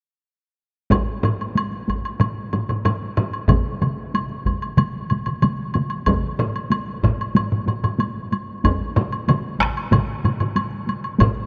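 A straight, driving 4/4 pulse opens this ceremonial cut from a longer Japanese traditional taiko piece, where three taiko ensembles (two close and dry, one struck with hard sticks and carrying a vintage, band-limited tone up front) pound alongside a woody, close woodblock, joined at 3.5 seconds by a fourth heavy-stick taiko group with a small-room character, all set within a vast, echoing cathedral space.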